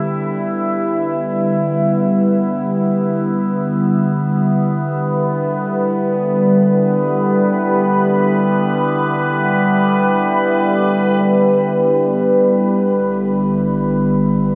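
Ambient music in free time and G major, tuned to A4 = 443 Hz, serene and luminous in mood and cut from a longer piece. An evolving wavetable pad sits up front throughout, holding sustained chords with a morphing, warbling, vintage sine character, slow attack and long release, colored by phaser and shimmer reverb, and from 11.2 seconds a filter sweep reshapes it. At 13.0 seconds a deep, rumbling, ominous drone enters in the background on a low G, dark and quiet beneath the pad, all set within a wet echo chamber reverb.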